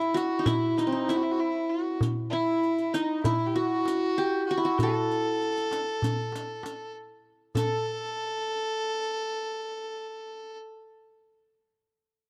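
Soulful and melancholic, this Turkish makam ensemble passage in A makam nikriz moves at 195 BPM in 9/8, with a bright-edged, plectrum-plucked qanun carrying the melody up front over a dark, earthy bowed violin second line with light vibrato, while a clay-shelled darbuka and a riq with dark jingles drop out near 7.8 and 7.9 seconds, all captured as a dry, close 1970s-style small-room studio recording.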